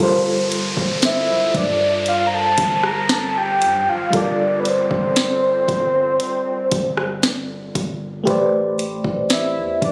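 Late-night and sensual, this slow contemporary R&B excerpt at 58 BPM in G dorian opens with a mellow FM electric piano pulsing with tremolo over a deep, boomy 808-style bass and a descending electronic downlifter, before a soft-kicked, sharp-snared, tape-warm drum kit with warm hats arrives at 0.5 seconds and a round, octave-layered synth lead with chorus, vibrato and digital delay takes the melody up front from 1.0 seconds, moving from Gm11 to Am11 at 8.3 seconds in a lightly reverberant room that sounds captured on a phone.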